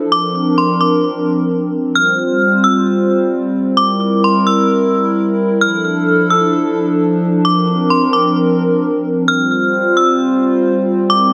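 A dark, gently reverberant hip hop excerpt with a blissful, floating half-time feel, where a hollow, flute-like pad with a slow attack holds sustained chords through a Bbadd9, Fsus2, C7 and Dmadd9 progression while a metallic, inharmonic FM bell rings out a high melody from 0.1 seconds, its chorus and digital delay lending a vintage warble.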